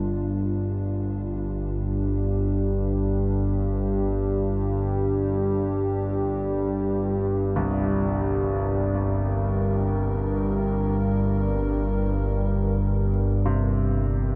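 Unfolding in free time, this dark ambient drone in G minor sets an unsettling mood from its first moment, resting on a warbling, vintage analog drone that sits up front with chorus and a dark analog pad holding sustained chords, its nasal, detuned tone also touched by chorus. At 7.6 seconds a clear, worn concert grand piano enters with low arpeggios sent through delay, its deep bass adding weight. A huge, wet reverb with a 7.4-second decay surrounds the parts in a dark, warm production, and the passage is cut from a longer piece.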